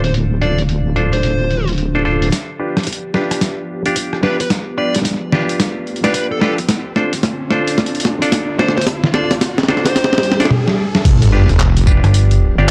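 Gritty and playful, this glitch hop excerpt moves with a swung 4/4 lilt as a dark, fuzz-distorted lead guitar carries the melody through tape echo until 10.4 seconds. Underneath, a warbling, nostalgic pad with 12-bit sampler grit and chorus holds sustained chords in the background, pumping against the sidechain, while a hollow, nasal clav punctuates the harmony with stabs through a combo amp. A boom bap sampler-style kit sits up front, its pitched-down snare, hi-hat, handclaps, tambourine, rim click, toms and crash all muffled by low-pass filtering, and a thumpy, tape-soaked electronic kick joins in the background at 2.3 seconds. A heavy, detuned wobble bass opens the piece, returns when the drop lands at 11.1 seconds after a long build with drum fills, an electronic riser and a swell, and the impact and sub drop hit. The progression trades Dm7 and G7, and a snappy, metallic FM slap bass punches in on G1 at 12.0 seconds, all set in a dark production with light digital ambience.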